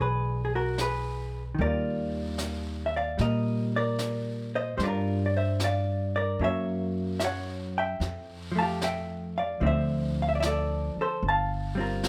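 A romantic, late-night jazz ballad at 75 BPM with a gentle swing, this short excerpt from a longer piece sets a dark, clean hollow-body electric guitar up front, picking lush extended chords over a woody, pizzicato upright bass. Brushes on the snare and hi-hat enter at 0.8 seconds, sitting softly behind them in a natural studio room. A light reverb softens the sound as the harmony drifts through rich ninth and eleventh chords.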